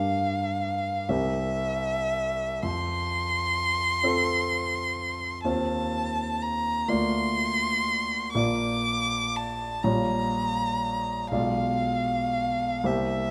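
Tender and serene, this romantic classical duo excerpt unfolds in a rubato 6/8, setting a warm, vibrato-rich violin melody with soft attacks and expressive portamento high in its register over a concert grand piano accompaniment of deep, natural bass, both heard close and detailed within a moderate recital-hall reverb, as the harmony moves from Gm7 and C7 to F before reaching a Bdim7.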